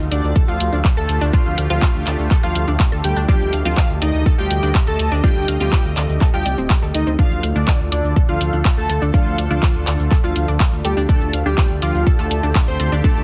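A straight 4/4 groove of punchy, up-front electronic kick and a house kit of handclaps, shaker and bright hi-hats drives this dark, melancholic melodic techno, with sidechain pumping breathing through a menacing detuned saw bass, an airy pad in the background, a fat analog lead with vibrato and tape echo, a nasal polysynth second line and lush delayed pluck arpeggios, while a muted, phased dub chord stab joins at 1.3 s alongside a very quiet drone of moving overtones as the harmony turns from Fadd9/D to Dm at 7.2 s in a dense, heavily limited mix.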